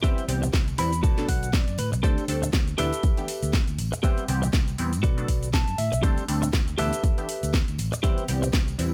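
A punchy, up-front electronic kick drives this joyful, feel-good filtered disco house excerpt with a swung sixteenth feel, joined by a house kit of cracking snare, metallic hi-hats with sidechain pumping and cabasa, very quiet soft-handed tambourine and congas, an amped fingered electric bass entering at 0.2 seconds, a detuned sawtooth polysynth comp treated with chorus, phaser and cassette tape, and a bright, twangy clean electric guitar riff with fills at 0.5 and 5.3 seconds, the bass, synth and guitar each pumping against the kick in a dry mix.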